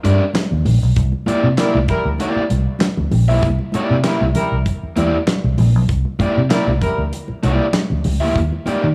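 A dark, round, foam-muted vintage electric bass sits up front in this gritty funk excerpt, anchoring a straight 97 BPM groove in 4/4 from the first beat. Beside it, a crunchy, overdriven electric guitar plays picked accompaniment, also placed up front. A damped 70s kit adds a fat snare, a tight kick, hi-hat and handclaps, while congas with a bright, thin-skinned tone and soft hands sit close and dry in the background. A mellow, distant pop-style horn section enters as a tight second line at 1.6 seconds and drops out at 7.0 seconds. The harmony moves from Ebmaj7 to a long stretch of C9 before returning to Ebmaj7, all wrapped in light, small-room reverb.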